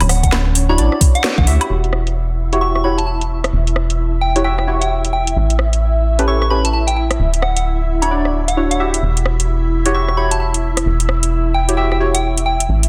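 Opening with silky, phased string-machine chords over a rubbery, up-front square bass and a swung garage kit of cracking snare and metallic hats, this moody, late-night two-step garage fragment at 131 BPM in E dorian adds a pure FM bell melody with dub echo and deep, detuned chord stabs with cassette-tape colour, while a knocking kick sounds only from 0.2 to 1.5 seconds and a filter sweep runs over the drums from 1.7 seconds, set in light digital reverb with a dense, heavily limited master.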